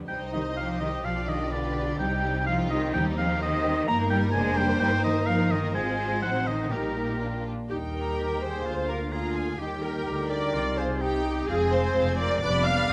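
Quick, urgent classical-period orchestral music in 2/4, cut from a longer piece, with a focused, vibrato-rich violin section carrying the melody over a dark, distant cello section and smooth double basses, while a clear solo oboe, a pure, soft-attack flute and a second violin section weave supporting lines above even viola accompaniment and mellow French horn chords, as round, very quiet timpani sound briefly from 2.9 s and a close, detailed sound with light reverb sets a restless mood.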